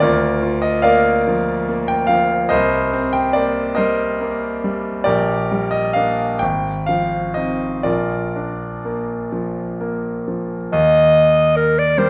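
A clear, close-miked clarinet enters up front at 10.7 s with a short, tender melody over the Eb chord, after the bright concert grand piano, with its deep bass, has led this serene romantic classical fragment alone from 0.0 s through a slow, rubato 6/8 progression at 40-49 BPM, all set in a wet recital-hall reverb.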